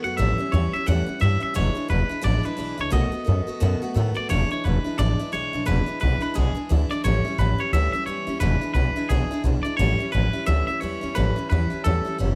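Rockabilly at a brisk 175 BPM in 4/4 with a swung eighth-note feel, this rowdy, rollicking clip in E mixolydian is cut from a longer piece and runs about 12 seconds. An upright bass, woody and thumpy with a dark gut-string tone, sits up front at the bottom of the mix, plucked throughout. A picked steel-string acoustic guitar with a full-bodied dreadnought sound and the sparkle of fresh strings carries the accompaniment. Over them, a twangy, clean, compressed electric guitar takes the melody, its picked notes trailed by tape echo until it drops out at 12.2 seconds. The changes move through dominant sevenths on A, E and B, and the whole band sits in a light reverb.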